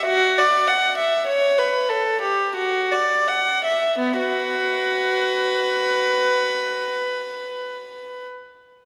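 This short excerpt opens on a lone violin, close and up front, playing a grave, introspective baroque-style suite movement in B minor at a slow 40-51 BPM in 3/4. The bowed line carries an airy, reedy gut-string tone in period style, ranging from B3 to F#5 and tuned to A4 = 444 Hz. The pulse is rubato, and the opening phrase slows down through its first 4.0 seconds, moving from an F#7sus4 colour to Dadd9/F# harmony. At 4.0 seconds a second phrase begins on a bare B5 sonority and runs to 8.1 seconds, with the violin sounding until 8.3 seconds. A church or concert hall setting wraps the single player in a long, wet reverb of 2.9 seconds, lending the solo a solemn, spacious halo.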